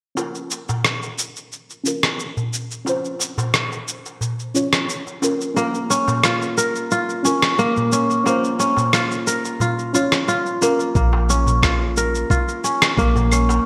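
A deep, nasal synth chord stab, carried by chorus, cassette-tape colour, delay, pumping and a filter sweep, opens this hypnotic organic downtempo excerpt alongside gritty, up-front sampled shaker, rim click and claves in a small gated room and soft-handed, crisp metal-shell darbuka, before a mellow, ringing fingerpicked kora enters at 5.6 s through a low-pass filter and delay, and a woody, round FM bass and thumpy, compressed electronic kick join at 11.0 s, all within a bright 1980s-style digital production bathed in a wet plate reverb.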